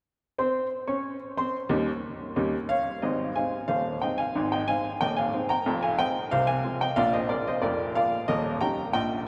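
Ragtime piano at 91 BPM in a straight 2/4, this jaunty, lively fragment in Ab major features a solo upright piano with a woody, intimate tone, short sustain and audible action noise, sitting up front from 0.4 to 9.2 s while a long cathedral reverb fills the church-like hall as the harmony moves from Eb7 through Ab, Fm and Bb7 back to Eb7.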